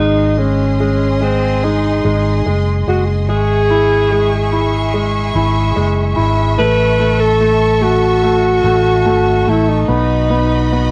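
A straight 4/4 pulse at 73 BPM carries this heartbroken, emotional pop ballad in C# minor, tuned to A4 = 436 Hz, as a breathy alto saxophone sings the up-front solo melody with vibrato, soft subtone and a cassette-tape tint. Beneath it, a clear concert grand piano with deep, open lows and a lush bowed string section, both bathed in plate reverb, move through G#, C#m/G#, A and B, while a bright, punchy fingered electric bass sits forward in the mix. The 10.9-second excerpt has the moderate room reverb and homespun character of a home recording on cassette.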